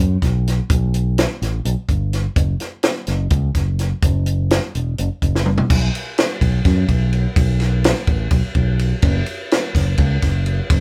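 A band playing live in one room, caught with light reverb, opens this short cut from a longer math rock and midwest emo piece, intricate and wistful in mood, moving at 252 BPM in eighths across a straight 7/8. Fingered electric bass, punchy and up front with a direct, amped tone, ranges from E1 to F#2 from the first moment, while a compact cocktail drum kit joins at 0.2 s, dry and natural, with dark cymbals, a high-tuned snare and a punchy kick. A drum fill at 5.3 s carries the pair into a second section that begins at 5.7 s.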